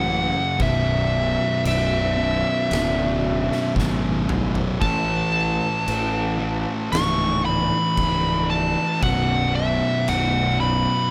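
The recording is dry and close, a heavy slab of ominous, sludgy stoner and doom metal in a straight 4/4, cut from a longer piece. Up front, a fuzz lead guitar carries the melody high above the rest, its picked, distorted tone trailing a delay. Beneath it, three fuzz guitars grind through the low riff: a thick, mellow one and a dark, compressed one sit in the background, while a double-tracked one is very quiet. A fuzz fingered electric bass is pushed forward, growly, punchy and overdriven with a direct-and-amped bite. The oversized low-tuned drum kit enters at 0.6 seconds from the background, its boomy kick, fat snare and shadowy cymbals set in a bright stone room that pumps, with a drum fill at 3.8 seconds. The harmony moves from F#m to Bm, settles on A, and closes on B5.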